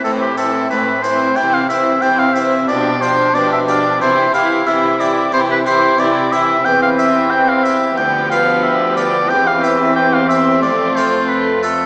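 A clear, up-front solo oboe carries the melody from the start of this festive, brilliant baroque-style concerto movement at 91 BPM in 4/4, over gut-string period-style strings with light vibrato: a rich background violin section also playing the melody, a close, warm second violin line, a distant, dark viola accompaniment and reedy cellos on the bass, joined at 0.1 s by a plucked Italian-style harpsichord with octave strings, as the music settles into C major from 6.7 s in a wet church or concert-hall reverb with a small-speaker sound.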